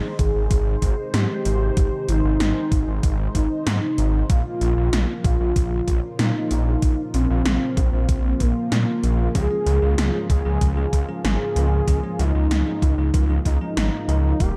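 Romantic and dreamy, this synthwave excerpt moves in a straight 4/4 over a dark, warm digital ambience. A velvety, detuned sawtooth lead with chorus, vibrato and tape echo carries the melody, while a smooth analog pad with a moving notch, soft attack and sidechain pumping holds sustained chords in the background. Up front, a thick, saturated detuned saw bass with unison voices and chorus anchors the harmony as it moves from Ab to Bbm and then to Db. The drums pair a thumpy, sampler-style electronic kick with 80s electronic pads, whose gated snare and metallic hi-hats are overdriven and bathed in studio reverb. At 9.3 seconds, a bell-like, bright tine electric piano joins with clean, direct stabs placed quietly behind the other parts.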